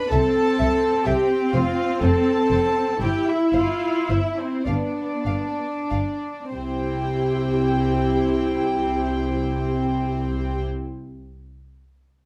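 A slow, rubato pulse of about 30-43 dotted-quarter beats per minute sways in 6/8, easing back over the first 6.5 seconds of this passage cut from a longer romantic movement for string orchestra in C major. The mood is tender and lyrical, with the harmony moving from C to F, back to C and on to G before a new phrase settles on C at 6.5 seconds. One violin section sings the pure, floating melody, while a second violin section adds a supporting line, both bowed sul tasto with a soft attack and placed close. Beneath them the viola section gives the accompaniment a woody, lush vibrato, and the cellos and double basses form a rich, gentle bass, with the basses sitting up front. Light reverb and a dark, warm production wrap the ensemble in an intimate glow.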